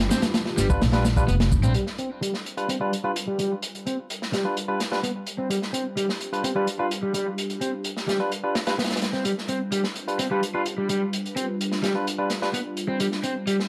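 A straight 4/4 breakbeat groove drives this raw, gritty excerpt. It pairs a crunchy, saturated drum kit with a faint background shaker and a woody, thumpy pizzicato upright bass, both of which stop at 1.7 s. Over this, a dark overdriven semi-hollow guitar riff with delay plays alongside barky tine electric piano stabs carrying vintage 12-bit sampler texture and a swirling, detuned analog pad with phaser, chorus and sidechain pumping. It all sits in a warm production with moderate studio reverb, and the guitar and pad both take filter sweeps from 1.8 s.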